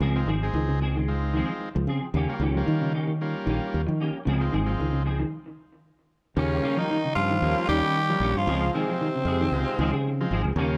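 A funky, hypnotic afrobeat groove at 114 BPM with a light 16th-note swing opens on an up-front warm fingered bass, dark, slightly broken-up guitar arpeggios with tape echo in the background, and clean hollow-body guitar stabs with ensemble chorus, joined by a buzzy vintage combo organ through spring reverb over Dbmaj7 and Eb7, before a stop at 5.3 seconds gives way at 6.4 seconds to a raspy, gritty, close-miked tenor saxophone melody shadowed very quietly by a bright trombone and a whispered, mellow bass trombone in a moderate club room.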